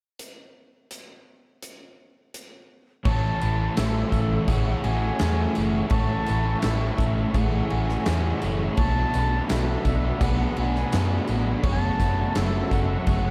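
Hazy and wistful, this shoegaze and dream pop excerpt moves at 84 BPM in A major, opening with a huge arena drum kit alone, its bright cymbals, fat snare and punchy kick up front, before an overdriven semi-hollow guitar slips in at 3.0 seconds and the rest of the band follows at 3.1 seconds over Amaj7, later shifting to Bm7 and F#m7. A round, dark hollow-body bass sits up front while a thick fuzz guitar riff, the overdriven semi-hollow guitar riff with reverse reverb, and dark, slightly broken-up arpeggios from a guitar through a small old amp fill the background, joined by a jingly, close tambourine. Above them an airy, mellow concert flute sings an expressive melody with vibrato through analog delay, and a warbling, lo-fi tape-like pad from 3.6 seconds adds nostalgic sustained chords, all soaked in a dreamy, cavernous reverb.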